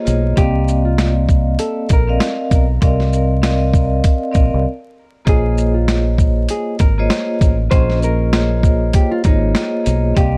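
A ringing, metallic vibraphone with slow motor vibrato opens this dark, tough boom-bap hip-hop excerpt at 98 BPM with a swung 16th feel, joined at once by a round, deep electric bass and a gritty, pitched-down sampler drum kit of thumpy kick, high-tuned snare, hi-hat and shaker, while a thumb-plucked nylon-string guitar with audible finger squeak carries the tape-echoed melody over vinyl crackle, moving from Cm11 to Bbm11 after a brief break at 4.7 seconds.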